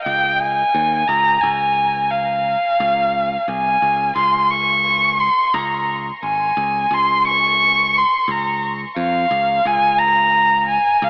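Heard through a narrow, AM-radio filter and bathed in a huge ambient reverb, this hopeful, soaring post-rock fragment moves at 88 BPM in Db lydian, cut from a longer piece. A single muted violin carries the melody up front, its veiled, con sordino tone shaded with vibrato, soft attacks and gliding portamento, while a slapback echo trails each phrase. Beneath it, a bright, growly picked electric bass sits low and quiet in the mix as the harmony drifts from Db through Fm to a Dbmaj7.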